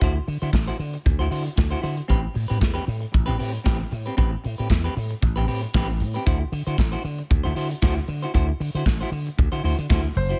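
A growly slap bass run through an envelope filter sits up front in this driving, glamorous disco excerpt, its bright, amped tone riding a lightly swung sixteenth-note groove over D9 and Am9 chords. A modern studio drum kit of punchy kick, medium-tuned snare and hi-hat pumps alongside it with gated reverb, while a dark, clean semi-hollow electric guitar with tremolo adds fingered accompaniment. At 10.2 s a clear concert grand piano strikes a single C5 with long sustain just before the cut.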